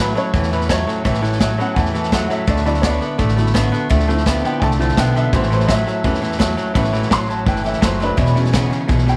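A jangly, detuned honky-tonk upright piano takes the lead in this rollicking, rowdy rockabilly excerpt, playing a solo across the full 9.2 seconds with a boxy, short-sustain vintage character. Beneath it, a clean electric guitar plays a twangy, compressed riff low in its range, sitting up front with a splash of spring reverb. A woody, thumpy upright bass on gut strings anchors the bottom, while a picked swing-style acoustic guitar with fresh strings adds a bright picked part from the background. The vintage drum kit comes in at 0.2 seconds with a punchy kick, medium-tuned snare and hi-hat, its small-room sound up front and rolled off on top. The straight 4/4 groove moves through A6, D6, Dm7, back to A6 and on to E6 under a light studio reverb, cut from a longer piece.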